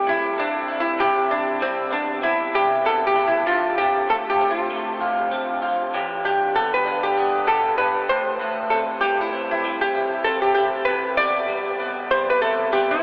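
Laid-back and hazy, this short fragment of an indie pop piece moves with a gentle swung sixteenth-note feel in 4/4. A miked and amplified archtop guitar carries the melody from start to finish, its dark, clean, hollow-body tone picked up front with a subtle chorus and analog delay, so the whole 13 seconds plays like a jazz guitar solo. Underneath, an electric guitar through a small old amp supplies the accompaniment, its warm, picked, compressed sound slightly broken-up and colored by lush chorus and a warbly pitch drift. The harmony drifts through Am7, Cmaj7, Dm7 and Em7 before returning to Am7 and Cmaj7. The mix is dreamy and soaked in a huge ambient reverb with a long 8.1-second tail, while a telephone-like sound colors the whole.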